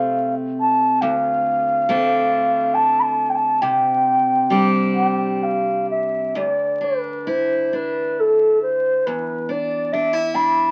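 Mournful and haunting, this brief excerpt of a Celtic slow air drifts at around 67 BPM in a loose, rubato 3/4, its uneven beats giving it a breathing, unhurried quality in D dorian, tuned slightly low to A4 = 436 Hz. A mellow, hollow baroque flute carries the melody from A4 to B5 across the full 10.7 seconds, its woody, pure straight tone marked by a crisp attack and rolled-off highs, sitting up front. Beneath it, a picked steel-string acoustic guitar supplies accompaniment from D2 to E4, its warm concert sound also close and present though set lower in the mix. The harmony moves from F/C through Dm7 and Csus2, then shifts at 6.3 seconds into a second section built on Dsus2 before landing on an E7 chord with its third omitted. The whole sits in a damp studio ambience with a short reverb tail, wrapped in the crackle and patina of a very old 78 rpm record that lends it a faded, antique air.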